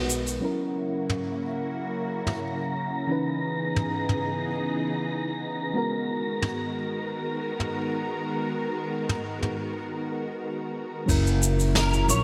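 Sunset chillout in a warm, wistful mood, cut from a longer piece, where a round, warbling FM electric piano with chorus and delay and a silky string machine hold chords over soft brushed drums with dark cymbals, a woody pizzicato upright bass sounds briefly at the opening, an airy, wind-like noise texture drifts in at 1.4 seconds, and at 11.1 seconds the upright bass returns alongside a deep electronic kick before a clean picked electric guitar melody begins at 11.8 seconds, all bathed in lush hall reverb with bright 1980s-style digital production.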